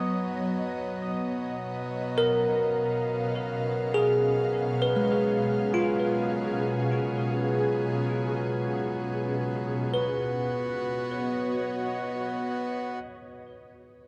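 In free time, this serene ambient excerpt in B lydian drifts from Badd9 to C#13/B and back at 9.9 seconds, as an ethereal, up-front pad with ensemble chorus and tremolo holds sustained chords until 13.5 seconds, a bright, bell-like tine electric piano spins tape-echoed arpeggios to the end, and a reedy, breathing hand-pumped harmonium drones quietly beneath until 13.0 seconds, all set in an echo-heavy mix bathed in wet spring reverb.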